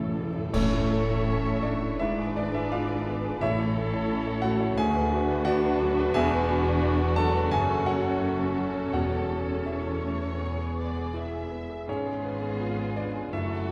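In a flexible, rubato 4/4, this passionate, lyrical romantic movement for piano and orchestra opens on a short timpani fill, struck with hard mallets, followed at 0.5 seconds by an accent of bright clash cymbals and concert bass drum. The clear, intimate grand piano carries the melody up front, its action noise audible as it ranges from deep bass notes into the upper treble. Behind it, muted violin sections with vibrato play the melody and a second line, while violas supply soft-attack accompaniment and cellos and double basses hold the bass, all con sordino, dark and veiled in the background. The very quiet timpani continue until 10.0 seconds, and the harmony moves through colourful chords such as a diminished seventh, an E9 and a closing C#7/G#. A wet scoring-stage reverb places the ensemble further back in the room, giving this fragment of a longer piece a spacious, romantic glow.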